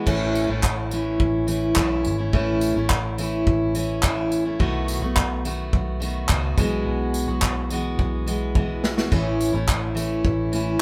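A straight, steady 4/4 pulse drives this short, heartfelt and sunny acoustic pop passage, cut from a longer piece, with a loose indie drum kit up front that mixes a punchy kick, medium-tuned snare, handclaps, tambourine and crash and splash cymbals in a small, pumping room, adding a brief fill at 8.6 seconds. A full-bodied jumbo steel-string acoustic guitar, picked and up front with audible finger squeak, carries the chords from A through B7 and Eadd9/B before returning to A at 9.1 seconds. Beneath it, a vintage foam-muted electric bass, fingered and amped, gives a dark, round low end, all under light reverb that suggests a band playing live together in one room.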